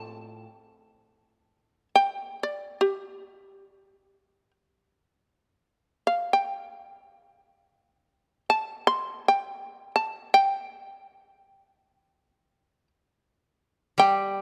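Japanese traditional chamber music in free time and G suspended pentatonic, austere and calm, cut from a longer piece, where a powerful, buzzing, plectrum-plucked fretless shamisen carries the melody up front and plays alone from 0.4 to 14.0 s, while a bright, woody koto played with fingerpicks adds brief low accompaniment only at the opening and closing moments, all captured with close, detailed microphones and light reverb.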